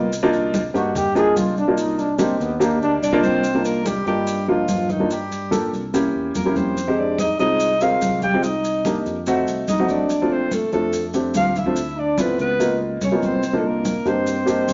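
Wet studio reverb and a rolled-off top end lend this excerpt a soft, rounded sound. It is a sultry, sophisticated piece of Afro-Cuban jazz in C minor, moving at 144 BPM in a straight 4/4. The opening is a trombone solo with vibrato and scooped notes over a dark, mellow baby grand piano, whose action noise and short sustain sit up front. A growly, punchy fretless electric bass, bright thin-skinned congas in the background and grainy maracas fill in the lower and rhythmic layers. At 3.0 seconds a breathy, whispered alto saxophone enters with the melody, intimate and close-miked, and the trombone settles into a second line. The harmony drifts through rich chords such as Cm11, C7b9, Bbmaj9 and Db13 before returning to Cm11.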